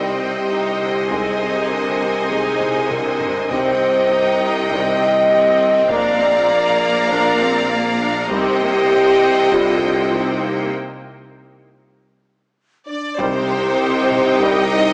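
A dark, epic orchestral film cue in C minor at 99 BPM opens with strings and brass sounding together: a clear, focused violin section carries the high melody over a second violin line, while a rich viola section and lush, bowed cellos sit in the background. Dark, roomy French horns hold sustained chords as the most prominent voice, joined by a very quiet, bright trombone section, with a warm tuba and a distant double bass section anchoring the low end. Taiko drums struck with heavy sticks enter at 1.1 seconds, low in the mix, and play a drum fill soon after. The harmony moves through C minor, A-flat over C and B-flat before a chordless break from 10.7 seconds. A hollow, soft-attacked flute ensemble slips in very quietly at 12.9 seconds, and a huge, barely audible impact marks the return to C minor. The cue sits in a wet scoring-stage reverb with a small-speaker character, and it is cut from a longer piece.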